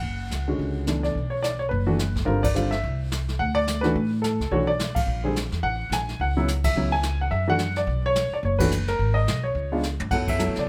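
Cool and smoky, this fast swinging jazz piano trio fragment at 214 BPM features an intimate, up-front baby grand with audible action noise, short sustain and plate reverb carrying the melody over a woody, pizzicato upright bass with steel strings, while a brushed kit with dark cymbals, a medium-tuned snare and a boomy kick sits further back in a small room, with band accents at 2.4 and 4.9 seconds and a drum fill at 9.8 seconds.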